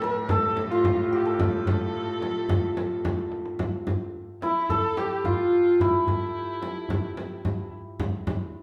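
In a straight 4/4, this passionate, stately Persian modal ensemble excerpt sets a shimmering, ringing hammered santur melody up front over a distant, smooth bowed kamancheh second line with vibrato and portamento, a veiled, nasal muted cello drone that stops at 3.6 s, a large, dry frame drum, and a deep, soft-handed tombak in the background, with a drum fill arriving at 3.0 s, the band playing live together in one room with wet large studio reverb.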